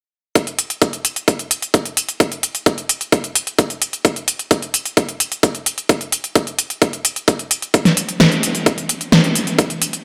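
A moderate, lush hall reverb fills this dark, warm recording, giving the short drum passage a sense of large space around a tape-warm, up-front production. It is an excerpt of euphoric, triumphant EDM at 130 BPM in a straight 4/4, cut from a longer piece. An electronic kick drum enters at 0.4 seconds, layered and punchy, with a high-pass filter and studio reverb shaping its sound. Alongside it, a big-room dance drum kit brings a huge snare and crisp hi-hats, also layered and produced with studio reverb. The kick stops at 9.7 seconds, leaving the kit to carry on briefly until 10.0 seconds.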